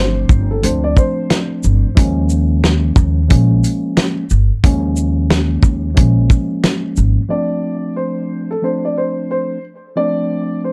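Boom-bap hip-hop at 90 BPM with a swung 16th-note feel, gritty and tough: a mellow, cassette-tinged tine electric piano holds chords throughout over a thumpy pizzicato upright bass, a soul drum kit with a fat snare and tight kick, and a faint finger snap, while a dark, boxy upright piano with plate reverb, delay and audible action noise plays brief melody at the start and returns at 7.3 seconds, after the bass and drums stop, to close the excerpt over the electric piano.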